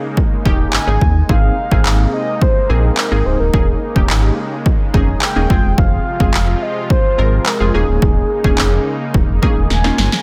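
A dry, close-sounding mix with very little reverb opens this upbeat, euphoric dance-pop excerpt, cut from a longer piece in a straight 4/4 groove. A punchy analog drum machine sits up front with hard-hitting kick, snare and handclaps, its tape-warm tone carrying the air of having been re-recorded in a large room, and a drum fill closes things out at 9.7 seconds. Underneath, a deep, full sine sub bass with an added octave pumps through sidechain compression, while a funky polysynth comp of detuned sawtooth and square waves, touched with ring modulation, chorus and a plucky filter, fills in the middle. Far back in the mix, an evolving, detuned unison supersaw swells in slowly and breathes with the same sidechain pumping. On top, a mellow, horn-like lead with a round, vintage, warbling character sings from 0.7 seconds, its vibrato, filter sweep, chorus and dub echo giving it a full-bodied glow over chords moving through Eb7sus4, Abadd9 and Fm.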